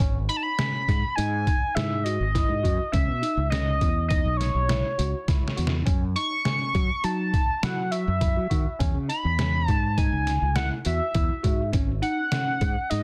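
A nasal, tearing sync lead with vibrato and chorus carries the melody from 0.3 s in this brooding, driving progressive instrumental, cut from a longer piece, moving at 102 BPM in 5/4 and F# dorian over chords from G#m7 through C#madd9, F#m and E6 to G#7(no3). Beneath it, a round, dark fretless electric bass with analog chorus sits up front beside a muffled, pitched-down trip hop sampler-style drum kit with a thumpy kick and overdrive, which plays a fill at 5.3 s. A barky, gritty overdriven tine electric piano plays arpeggios through phaser and delay, and the dry, dense, heavily limited master keeps the band close and forceful.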